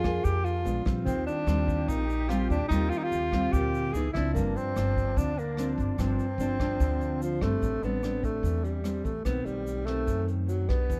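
A straight 4/4 bossa nova groove at 146 BPM, smooth and melancholic, carries an intimate, breathy tenor saxophone melody up front with plate reverb over fingerpicked classical nylon-string guitar, woody pizzicato upright bass, a vintage brush kit with punchy kick, hi-hat and rim click, and a grainy egg shaker in the background, while a distant, airy large flute ensemble adds a second line from 1.1 to 7.4 s before the harmony turns to A minor at 7.6 s in this dark, warm production cut from a longer piece.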